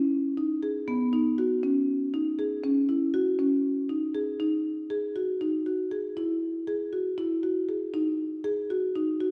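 Set in a reverberant recital hall with a soft, rolled-off top end, this short contemporary instrumental passage features a solo marimba played with soft mallets, its rosewood bars sounding woody, round and up front. The mood is hopeful and shimmering, moving at 238 BPM in a straight 7/8 within a mellow range from B3 to G#4. The music shifts to a new section at 4.4 seconds before the clip ends at 9.3 seconds, cut from a longer piece.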